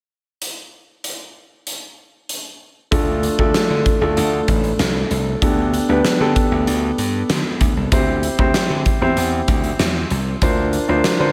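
Nostalgic and moody, this 1980s-style pop passage in D minor moves at a straight 96 BPM in 4/4. It is cut from a longer piece. A big acoustic rock kit opens alone at 0.4 seconds, with a fat snare, punchy kick and hi-hat drenched in gated reverb in a bright stone room. At 2.9 seconds a grand piano with long sustain and a glassy, direct slap bass join over Dm, Gadd9/D, C/D and Bbadd9/D chords, all in a small room with light reverb.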